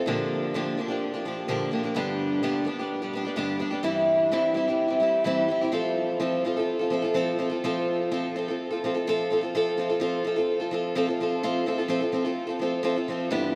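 Rock in a warm, hopeful mood, this short passage is cut from a longer piece and moves at 127 BPM in a straight 4/4, tuned slightly below standard pitch at A4 = 436 Hz. A single picked acoustic guitar, an old ladder-braced instrument with a dark, boxy tone, plays alone from 0.0 to 13.6 seconds, ranging from G2 up to A4. It sits up front and carries a tape echo, while a huge ambient reverb with an 8.1-second decay soaks the mix in a dreamy haze. The chords move from Bb6 through G, C/G and F, and a new section begins at 9.5 seconds.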